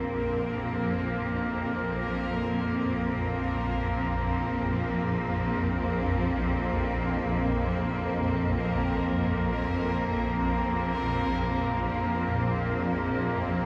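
A swarming, warbling drone sits up front in this unsettling, desolate dark ambient passage, a detuned unison of sine tones with a vintage, granular grain that fades in slowly, holds, and dies away over a long release through its own reverb. Above it, a bowed chamber cello section sustains chords in free time, its tone clear, smooth and even with vibrato, sounding distant yet placed forward in the mix. Alongside the strings, a bubbling texture of resonant, detuned sawtooth moves through random filter steps, treated with chorus and its own reverb, with a gradual attack and lingering tail. The whole excerpt sits in a vast, echoing cathedral reverb with a 5.3-second decay, and every part sounds from 0.0 to 13.7 seconds, cut from a longer piece tuned to A4 = 443 Hz.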